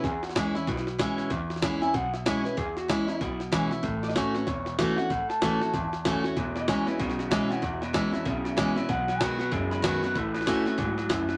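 This rockabilly excerpt has a rowdy, rollicking swing feel. A picked steel-string jumbo acoustic guitar sits up front with a full-bodied tone, picking out the accompaniment over E6, A6 and B6 chords. An electric guitar through a small old amp carries the melody with a slightly broken-up, lo-fi, twangy edge, and it drops out at 10.3 seconds. At 6.4 seconds a second amp-driven electric guitar enters with a low picked riff. Beneath them, a woody, dark upright bass with gut strings plays pizzicato in the background, while a gritty, compressed, pitched-up sampler-style drum kit adds a thumpy kick, high-tuned snare and hi-hat with a tape-like warmth. A moderate studio reverb gives the whole mix a modest sense of room.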